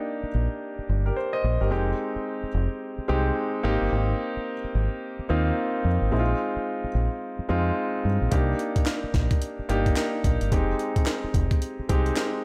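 A gritty, sampler-style breakbeat kit bursts in at 8.3 seconds with a thumpy kick, high-tuned snare, handclaps and hi-hat, its compressed, pitched-up sound treated with gated reverb and pushed up front in this slick, punchy new jack swing cut at 109 BPM with a swung 16th-note feel. From the opening, an intimate concert grand piano with audible action noise and long sustain carries the accompaniment over a dark, round fingered electric bass, both placed close and present. The harmony moves through Cm7, Fm7, Abmaj7 and Bb9sus4 before returning to a rootless Cm7 and Fm7, all within a light reverb.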